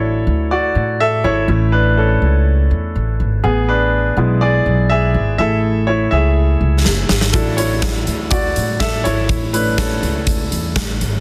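Uplifting and hopeful, this piano-driven pop excerpt opens with a bright, polished concert grand carrying the chords over a woody, thumpy pizzicato upright bass on gut strings, until a huge arena drum kit with a punchy kick and medium-tuned snare enters at 6.8 seconds and plays a fill at 6.9 seconds, all set in light reverb and a dense, heavily limited modern master.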